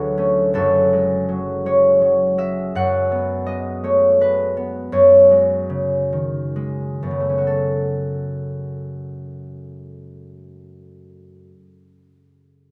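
Close, detailed microphones and a light reverb place a solo concert harp up front, its fingerpicked strings ringing with a warm, acoustic tone across a span from F#1 to F#5. This wistful, gentle classical fragment, cut from a longer piece, sits in F# minor and flows in a rubato 6/8 at roughly 40-57 BPM in dotted quarters. It opens on a Dmaj7 chord that moves to F#madd9, and the pace slows from 1.7 to 7.5 seconds before the harp falls silent at 11.9 seconds.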